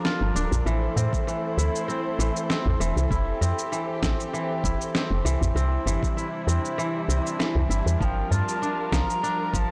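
Organic downtempo in G dorian at 98 BPM with a lightly swung 16th feel and an earthy, warm mood, this excerpt from a longer piece layers sustained, bowed chamber string chords with sidechain pumping under crisp, ringing kora arpeggios through tape echo, a round, dark FM bass up front, a gritty overdriven electronic snare and shaker, a very quiet, close and dry udu from 0.5 s, a thumpy overdriven kick from 1.1 s and an airy, expressive bamboo bansuri with vibrato and tape echo from 8.0 s, all within a blown-out, overdriven mix with light studio reverb.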